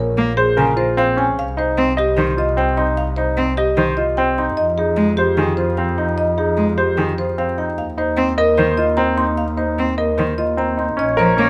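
Classical minimalist pattern music in Bb dorian, this short excerpt moves at 150 BPM in a straight 4/4 and feels both meditative and urgent, cut from a longer piece. A marimba played with medium mallets carries the melody, its tone warm, while a bowed double bass holds the low end with a clear, smooth, even sound and vibrato. A single bowed cello joins at 0.2 s, up front and rich, with a soft attack, vibrato and expressive portamento. From 0.4 s a baby grand piano spins arpeggios that sound intimate and a little worn, placed present in the mix with its action noise audible. The harmony moves from Bbm7 through Cm, Fm7 and Ebsus2 before settling on Bbmadd9, and at 11.0 s a mellow, distant solo clarinet enters with a brief second line on Db5. A moderate large-studio reverb surrounds the ensemble.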